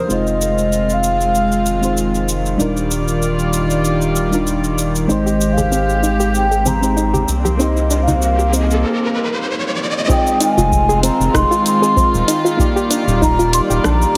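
Blissful and warm, this sunset chillout excerpt moves at 96 BPM in 4/4 with a gentle sixteenth-note swing, drifting through Fm7, Ebmaj9, Abmaj7 and Cm7 under a lush hall reverb and a heavily compressed, radio-like sheen. A distant, hollow baroque flute carries the melody with wooden vibrato over dark, reedy chamber strings holding sustained chords, a soft FM electric piano coloured by chorus, phaser and delay, a round, evolving analog bass up front, and a layered deep house kit of hi-hat, rim click and shaker, while a gentle nasal pluck plays arpeggios in the background from 5.1 s. Bright, soft-handed congas appear briefly, an electronic riser builds through a break, and at 10.1 s a deep analog kick drum enters as the chords return to Fm7.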